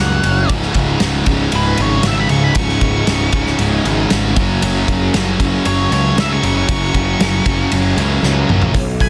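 Quiet-loud alternative rock at 116 BPM in a straight 4/4, this short cut from a longer piece feels anthemic and cathartic, moving over Gb and Db chords. A dark octave-fuzz lead guitar carries a solo melody through the whole stretch, its distortion trailed by tape echo. Beneath it, a thick fuzz guitar sits in the background playing a riff until 8.7 seconds, joined in the same low register by a bright overdriven electric guitar that enters at 0.5 seconds with a riff of its own. A growly, punchy fuzz bass stands up front, and a loose acoustic drum kit with dark cymbals, a punchy kick and a pumping room sound drives hi-hat, snare, ride and toms, closing with a fill from 8.2 to 8.8 seconds. A clean, twangy guitar with tremolo and tape echo plays arpeggios in the background only at the very start and again in the final moments, all set in a dry, dense and heavily limited modern master.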